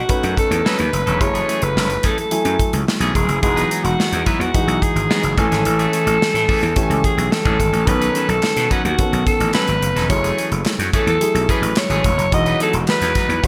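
A growling, raspy alto saxophone carries the melody up front in this slick, bittersweet slice of polished 1980s jazz-funk pop, its vibrato lending a vintage pop edge as it moves between E4 and D#5. Underneath, a gritty slap bass with overdrive punches through at the same level, while a modern studio drum kit with a tight kick, medium-tuned snare and hi-hat sits forward, treated with gated reverb. A concert grand piano with subtle chorus fills out the harmony with deep bass and long sustain, its action noise audible, and a clean, picked electric guitar with tube saturation and chorus plays a bright riff in the background. At 108 BPM in straight 4/4 and F# dorian, the chords cycle through B9, F#m9, Emaj9 and Amaj7, and a crisp, very quiet group handclap joins at 8.4 seconds before dropping out at 13.0 seconds. The whole cut, taken from a longer piece, carries a bright digital production sheen with light reverb and studio ambience.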